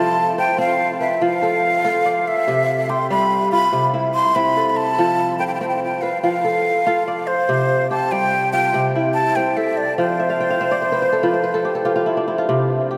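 A breathy flute with vibrato and a soft attack carries the melody up front, over bright, fingerpicked kora arpeggios that ring crisply beside it, both touched with tape echo, in this joyful, hypnotic fragment of West African string music at 96 BPM in a straight 12/8. The harmony rocks between F and C, and the kora adds a fill from 10.2 seconds before sounding alone after the flute stops at 12.0 seconds. A huge ambient reverb soaks the whole mix, giving it a dreamy, floating haze.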